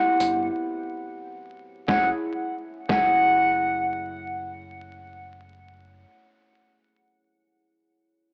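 Dusty and lo-fi, the recording sounds like a home cassette heard over AM radio, with vinyl crackle and a wet spring reverb hanging over this short, tough and moody boom-bap hip-hop fragment. Up front, a breathy silver concert flute sings an expressive, close-miked melody on F#5, straight in tone and tongued, with filtering, tape grit and tape echo on it. Beneath it, a bright, fingerpicked concert harp rings on through the whole cut, also filtered and taped, shifting from Am9 to F#m9 at 1.9 seconds. A pitched-down, compressed sampler-style drum kit adds a thumpy kick, a high-tuned snare and hi-hat with an overdriven crunch, while a break runs from 0.5 to 1.9 seconds. Far down in the mix, a deep, round dub bass, played with the fingers and direct and amped, supplies a dark low end.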